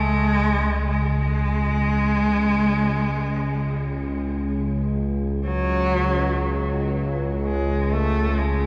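A lone bowed cello with expressive vibrato and portamento hovers between F#3 and A3 through shimmer reverb and tape echo, drifting in free time over an up-front, detuned sawtooth-and-pulse analog drone on C#2 whose chorus and filter sweep through the first 5.4 seconds lend a slowly evolving, ring-modulated edge, forming a brief, cavernous and desolate dark ambient fragment soaked in a 2.5-second plate reverb.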